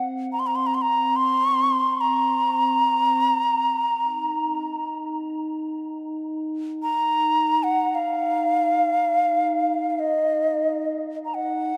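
A bamboo xiao and a glass harmonica sound together from the opening moment of this 11.8-second excerpt of meditative world music, which moves in free time in Eb kumoi. The low xiao carries the melody between Eb5 and C6. Its end-blown tone is airy and reedy, with a crisp attack and vibrato, and it sits up front, trailed by tape echo. Beneath it, the glass harmonica holds a softer texture between C4 and Eb4, its glassy, ethereal notes arriving with a slow attack and staying smooth. A huge ambient reverb with a 4.8-second decay surrounds the pair, giving the piece a haunting, spacious feel.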